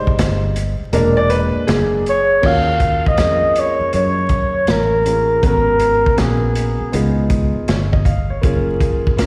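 A breathy flugelhorn with light vibrato and scooped notes carries the melody from 2.1 to 7.3 seconds in this nocturnal, mellow jazz-hop excerpt at 80 BPM in Eb minor with swung 16ths, its slapback echo shared by a woody upright piano with audible action noise, while a round, foam-muted fingered electric bass and a crunchy, gritty breakbeat kit with dark cymbals and a punchy kick fill out a sound heard as a live gig through the venue's PA, with recital hall reverb and vinyl crackle.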